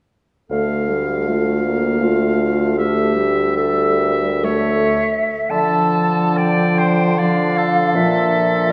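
Yearning and elegiac, this slow romantic movement for wind quintet in D minor sways in 3/4 with a rubato feel, moving between 51 and 81 BPM over chords that pass from Dm through A7/D to a closing Bbmaj7. From 0.5 s a bright oboe carries a second line with light vibrato, while a mellow, punchy clarinet sits in the background, a smooth-topped French horn fills the middle and a warm bassoon anchors the bass up front. At 4.4 s a pure, metallic concert flute enters with the tongued melody, played with vibrato and sounding distant in a reverberant recital hall heard from further back in the room.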